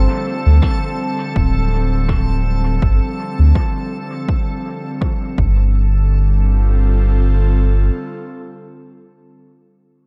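A deep, round sub bass sits up front in this meditative ambient dub fragment at 82 BPM, joined by an airy, breathy pad with chorus and a reversed, swelling granular texture, while a very quiet, smooth trombone sounds only until 0.6 s, when an overdriven, punchy electronic kick and a distant rim click with dub echo enter, the dark, dry mix moving from G9sus4 to Gsus2 and back.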